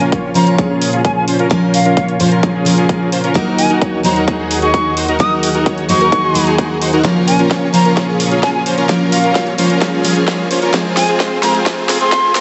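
Festival progressive house at 130 BPM in Bb minor, this powerful, anthemic build-up sets a pure, straight-toned concert flute melody with dub echo over a full-bodied picked steel-string acoustic guitar, a lush, warbling chorused pad and an up-front, detuned supersaw riff whose low-pass filter sweeps across the passage, while a punchy overdriven electronic kick, a huge-snare dance kit with hi-hats, a drum fill from 7.0 seconds and a very quiet riser drive the sidechain-pumped mix through a wet digital hall, in a passage cut from a longer track.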